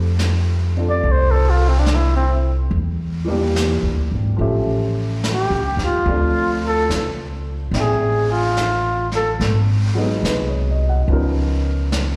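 Heard through a venue's PA in a recital hall with light reverb, this tender, romantic jazz ballad excerpt swings gently at 72 BPM, with a clear, up-front flugelhorn carrying the solo melody from 0.9 to 9.3 seconds, its vibrato, soft attack and scooped notes touched by slapback echo. Beneath it, a woody pizzicato upright bass sits close, while a natural-sounding baby grand piano comps with its own slapback echo. A distant, roomy brush kit with a rolled-off top whispers on snare and hi-hat from 0.2 seconds, as the harmony drifts from Fmaj9 through Dm9 toward Abm7 and Db13.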